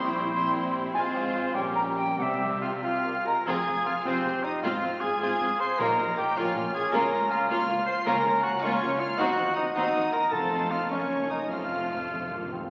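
Urgent and restless, this dramatic fragment of a romantic symphonic movement surges forward in a flexible, rubato 6/8. A violin section carries the lush, vibrato-laden melody high above, while a second, more distant violin section, a forward cor anglais with light vibrato and an airy wooden flute with a crisp attack weave the supporting lines. A bright, punchy clarinet plays very quietly from the start only until 3.2 seconds. Beneath them, a roomy bassoon, expressive violas and a tight, mellow French horn section supply accompaniment and sustained chords, and cellos and double basses bow a smooth, rich bass in the background. Timpani played with medium mallets on calf heads strike in brief bursts before closing with a fill from 11.5 seconds, all heard through the crackle and dulled top end of a very old 78 rpm record set in a reverberant concert hall.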